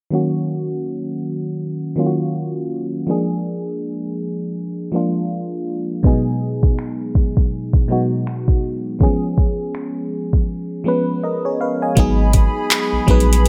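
A glassy FM electric piano with a bell-like attack and a shimmer of chorus opens this short cut from a longer contemporary R&B piece, sitting up front and spelling out Ebm7, Bb7, Abm7/Cb and Db7 chords in Eb minor at 81 BPM with a loose 16th-note swing. A filter sweep runs across the opening 12 seconds, and the whole mix carries a low-pass tint and very little reverb, giving it a close, intimate feel. At 6.0 seconds a smooth, electronic R&B drum kit enters up front, with a soft kick, metallic hi-hats, finger snaps and handclaps that sound re-recorded in a small room. At 12.0 seconds the harmony moves to Abm7 as a deep, full sub bass with an added octave arrives alongside a hollow, flute-like pad with an airy, detuned texture and slow attack. The mood is sensual and longing throughout.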